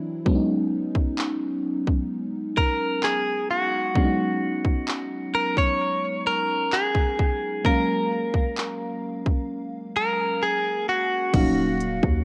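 A lush, dreamy FM electric piano layered with a soft pad opens this sensual, longing contemporary R&B excerpt with chorus and cassette-tape color, joined almost at once by an up-front trap kit with a hard-clipped kick, crisp hats, handclaps and crash, then at 2.6 seconds by a bright, twangy, direct-recorded clean electric guitar melody through analog delay, as the chords move from Db9sus4 to Gbmaj7 and a deep, boomy 808-style bass arrives on Ebm7 at 11.3 seconds in a dry home cassette recording.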